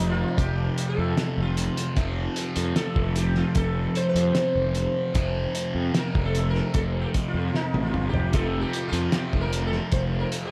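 Psychedelic rock at a slow 75 BPM in F major, trippy and hypnotic, with a buzzing, shimmering sitar soloing through tape echo over a bright, double-tracked fuzz guitar riff with phaser, punchy overdriven picked bass, and a muffled, cloth-damped drum kit entering at 0.4 seconds with a fat snare and a fill from 7.5 to 8.3 seconds, all soaked in a dreamy cathedral reverb in this short cut from a longer piece.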